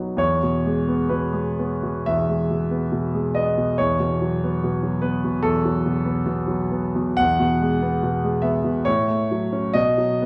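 A clear concert grand piano opens at once, playing alone in a romantic character piece that sounds like a passage lifted from a longer work. The mood is warm and passionate, and the rubato phrasing lets the music breathe freely within a four-beat metre. The piano spans from its deep bass up into the treble, with a natural tone and an up-front presence that places the instrument close to the listener. The harmony rests on E before moving to a B chord over an E bass around 3.8 seconds, returns home at 7.2 seconds, and then gathers toward F-sharp minor and B as the passage breaks off near 10.3 seconds. A moderate recital hall reverb surrounds the playing, giving each phrase a gentle halo of space.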